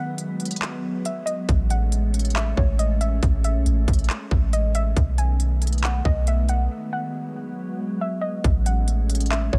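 A half-time trap groove at 138 BPM in 4/4 drives this blissful, floating cloud-rap excerpt in A lydian, taken from a longer piece. A glassy FM pad and a soft, round pluck open together, the pad holding dark, ethereal chords through slow attacks, long releases, ensemble chorus, built-in reverb and sidechain pumping, while the gentle pluck carries the melody through chorus, tape echo and a low-pass filter sweep. The electronic trap kit arrives at 0.2 seconds, up front and tape-tinged, with a hard-clipped kick, crisp hi-hats and handclaps. At 1.5 seconds the 808-style bass joins, deep and sine-like, each note striking quickly and then decaying, sitting heaviest in the mix. The chords drift from G#m7 to Amaj7, B7 and back, and the passage turns to a new section at 8.4 seconds as Amaj7 returns, all wrapped in digital ambience.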